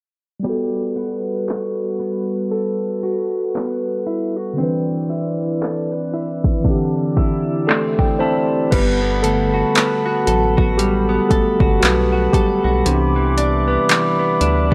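Contemporary R&B at a slow 58 BPM in G major, smooth and dreamy with a swung 16th-note feel, this excerpt opens under a filter sweep with a mellow, up-front tine electric piano, a pure, ethereal glass harmonica holding chords, and a clean, direct electric guitar picking arpeggios through lush chorus and tape echo; an overdriven drum kit with soft kick, hi-hat, handclaps and crash cymbal joins at 1.5 s, and after an electric piano fill the keys take a solo at 8.7 s as a rubbery, hollow square-wave bass comes in, all within a dry, gritty, low-passed sound over Gmaj9, Cmaj9 and D9sus4 chords.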